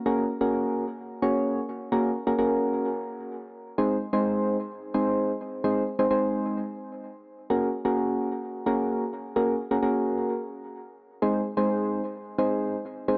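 A soft, electric-piano-like synth opens at 0.1 seconds and carries this short pop fragment alone until it ends at 13.2 seconds. Its tone is round and mellow, with a slightly detuned quality and a chorus shimmer, a fast attack, and notes that decay gently, all sitting up front in the mix, colored by an analog delay. At 129 BPM in a straight 4/4, the keys move between Gbadd9 and Ab chords, alternating roughly every few seconds, in a range from Ab3 to Db5. The mood is wistful and nostalgic, carried by the unhurried harmonic sway. Light reverb surrounds a dry, gritty hardware sound, giving the passage a lived-in, intimate character as it is cut from a longer piece.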